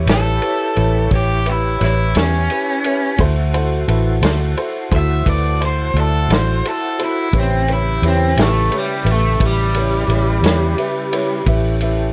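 A slow, straight 12/8 groove at 58 beats per minute carries this soulful, swaggering blues in A mixolydian, cut from a longer piece. A dry soul drum kit with a tight kick, a medium-tuned snare and ride cymbal sits mid-forward with a rolled-off top, while a vintage muted bass, fingered, round and dark, sits up front on the low end. An overdriven electric guitar takes the solo throughout, bright and picked, its melody reaching as high as E5. Behind it, a clear, worn baby grand piano adds open accompaniment with long sustain, and a clean tonewheel organ holds sustained chords in the background through a slow rotary speaker and chorus vibrato. The harmony moves from A9 to D9 at 3.2 seconds and back to A9 at 7.3 seconds, all set in a dark, warm production with light reverb.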